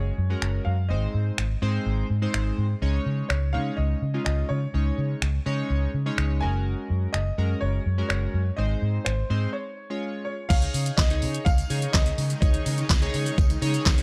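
Dance-pop with a carefree, upbeat lift, where a clear concert grand piano carries the melody over glossy, chorused retro synth keys and a round, foam-muted vintage electric bass that both pump against the sidechain, while an overdriven pop kit with a knocking kick, deep snare, snaps, handclaps, hi-hat, shaker and crash sits up front from 0.4 seconds, a very quiet jingly tambourine joins at 10.5 seconds after a brief break, and a shimmering, ethereal pad drifts into the background at 11.6 seconds, all captured in a dry, gritty cassette-tape sound.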